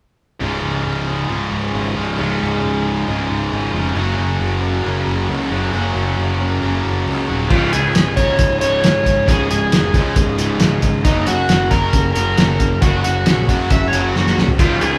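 Driving and confident, this classic rock excerpt at 135 BPM in Db major opens with a very quiet picked steel-string acoustic guitar, a bright overdriven electric guitar riff in the background, a tight distorted guitar riff and a fuzz-soaked electric bass over Db and Gb chords, before a cloth-damped, thuddy drum kit with a fat snare and muffled dark cymbals arrives at 7.5 s alongside an up-front, dusky overdriven slide guitar melody, joined by a short second fingerpicked slide line at 13.7 s and a drum fill at 14.1 s, the band playing live together in a large studio room.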